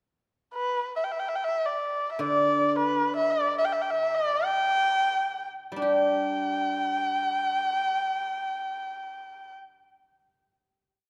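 Pastoral and festive, this brief, complete piece of Chinese traditional chamber music unfolds in a free, rubato 2/4. A dark, nasal erhu, played by one bowed player up front, enters at 0.5 seconds with an expressive modal melody full of ornaments, vibrato and portamento, with a soft attack and a boxy voice. From 2.2 seconds a guzheng plucked with fingerpicks adds a silvery, ringing accompaniment on its low strings; the music slows down before a final chord arrives at 5.8 seconds, all within a moderate concert hall reverb.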